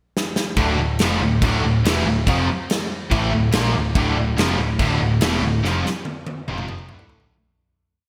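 A straight 4/4 pulse at 142 BPM drives this aggressive, short hard rock piece in D minor, where a punchy big-room drum kit with gated reverb opens with a fill at 0.2 seconds before three picked electric guitars (a warm overdriven semi-hollow with ensemble chorus, a scooped high-gain one and a sludgy double-tracked one) hammer a power-chord riff from 0.6 seconds, doubled by a growly overdriven bass in driving eighth notes, the whole set in a lush hall with bright 1980s-style digital production until a closing drum fill and fade-out from 5.6 seconds.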